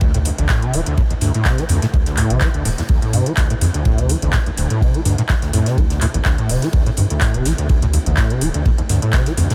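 Gritty and hypnotic, this raw acid house excerpt at 125 BPM in D phrygian sets a squelchy, resonant sawtooth acid bass riff up front under a filter sweep, distortion, chorus and delay, over a thick, saturated triangle sub bass with sidechain pumping, an overdriven deep electronic kick, a booming analog drum machine with handclaps and metallic hats, and a dry, airy funk kit with a high-tuned snare in the background, all in a small room with light reverb.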